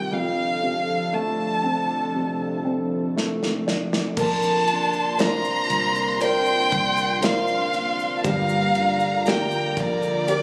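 A rich, up-front solo violin with vibrato sings a hopeful, heartfelt melody over clear, woody upright piano and an evolving, detuned sawtooth pad with chorus in this slow 59 BPM Bb major pop ballad excerpt, moving from F6 through Bbadd9 to Gm7; a modern studio drum kit with a punchy kick enters with a fill at 3.2 seconds, and at 4.2 seconds a lush, smooth-topped violin section adds a high second line, joined by fingerpicked, full-bodied steel-string acoustic guitar arpeggios in the background, a dark, foam-muted vintage electric bass and a grainy, very quiet, distant egg shaker, all heard as if recorded on a phone in a small room with club reverb and compression.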